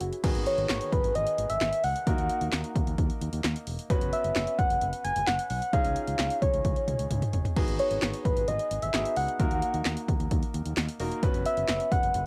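Synth-pop with a melancholic, cool mood, this short cut from a longer piece moves at a steady, straight four-beat pulse. A punchy analog drum machine sits up front, its dry kick and snare joined by hi-hat, handclaps, toms and a crash cymbal, all carrying a cassette tape grain, with a drum fill from 6.6 to 7.6 seconds. Beneath it, a fretless electric bass plays dark, round low notes through tube saturation, while a clear, natural grand piano supplies accompaniment in the middle register. Entering at 0.5 seconds, a soft struck FM synth lead carries the melody up front, its gentle, keys-like tone with a fast attack and decaying notes coloured by chorus, tape echo and cassette tape. The chords circle through G#m7, D#m, F#sus4 and C#add9, and the whole piece has the light reverb and character of a home recording on cassette.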